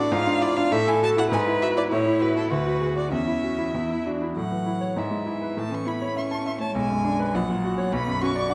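A quick classical-period movement for piano trio, this short passage cut from a longer piece moves with a graceful, cheerful lilt in two and a flexible, rubato feel. A clear, focused violin carries the melody up front with vibrato, bowed close by a single player. Beneath it a rich cello adds a smooth, even second line, also bowed with vibrato, while a brilliant grand piano supplies accompaniment with a natural tone and short sustain. The opening section gives way to a second section at 4.4 seconds, where the harmony turns toward B minor and its F-sharp chord before settling back on B minor near the close. All three players sound throughout, set in a recital hall whose reverb lends the trio a lingering, resonant bloom.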